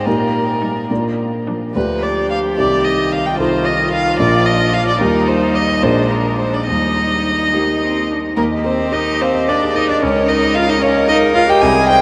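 Cheerful and graceful, this quick classical-period movement for piano quartet moves in 6/8 with a supple, rubato feel. A dark, woody solo violin carries the melody up front, its vibrato sounding distant, while a concert grand piano supports it with a natural, intimate tone, deep bass and audible action noise. At 0.6 seconds a soft-attacked viola joins the accompaniment, played sul tasto with an airy bow and a close presence, and a pure, floating cello sings a second line from the background. The viola drops out at 11.6 seconds, just before the close of this brief passage cut from a longer piece. A huge, wet ambient reverb places the quartet in a vast, echoing space, with a new section beginning at 8.4 seconds.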